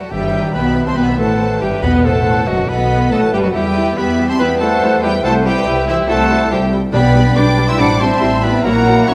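Stormy and restless, this cut from a longer classical movement for symphony orchestra pushes ahead with a dramatic romantic sweep and a rubato feel. A violin section carries the melody high and lush, with expressive vibrato and a soft attack. Around it, a second, more distant violin section, a bright solo oboe, an airy silver flute and a punchy clarinet play supporting lines. Beneath them the violas fill in the accompaniment, a very quiet French horn section and a dark, roomy trombone section hold sustained chords, and cellos and double basses give the bass a smooth, rich depth. A close, dry tam-tam sounds faintly at the opening until 1.8 s, when round soft-mallet timpani strike, returning at 6.9 s. The harmony travels from Em/G to a closing Am7, and a wet recital hall reverb gives the ensemble a spacious glow.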